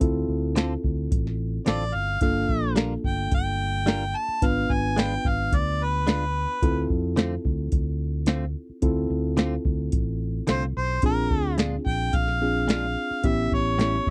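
Dry, close 1970s-style studio sound frames this mournful, brooding straight-eighth soul blues excerpt at 109 BPM in D dorian, where a tape-warm vintage rhythm box with deep kick, tonal snare and metallic hats, a round, dark fingered electric bass and a reedy electric piano heard through its built-in speakers carry the chords from Dm7 through G#dim7 to A7, a twangy, compressed clean guitar adds picked stabs from 0.6 s, and an up-front, bright overdriven harmonica with light vibrato and scooped notes sings a jazz-style solo line from 1.7 s, pausing at 6.9 s before returning.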